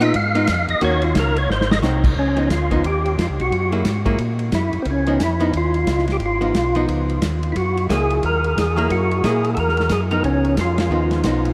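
Drenched in a huge, echoing reverb that places the band in a vast space, this short cut from a longer piece is a swinging, greasy soul jazz organ trio in Db mixolydian at a brisk 178 BPM with a swing feel on the eighth notes. The lead organ carries the melody up front with a fat, lightly overdriven tone, third-harmonic percussion, audible key click, chorus vibrato and a slow rotary speaker, taking a short featured turn over the opening bars. Underneath, a second organ holds down the bass line with a mellow, round, clean sound, also shaded by chorus vibrato and slow rotary. A clean, picked hollow-body electric guitar comps in a dark, compressed voice, while an acoustic drum kit with smooth, dark cymbals, a punchy kick and a medium-tuned snare keeps the groove sitting back in the mix. A drum fill at 1.5 seconds leads into the next section at 2.2 seconds, which moves between Db9 and Gb9 chords before the band hits an accent at 10.7 seconds.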